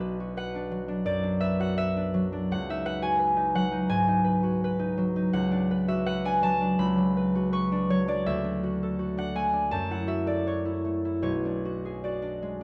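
A bright, ringing concert harp, fingerpicked and up front in light reverb against a dark production, plays this gentle, wistful fragment of a solo classical piece in B dorian at a rubato 82 BPM in 4/4, spanning B1 to C#6 as its harmony drifts from Bm7 through Dadd9 and F#m7 to settle on Bm6 at 11.2 seconds.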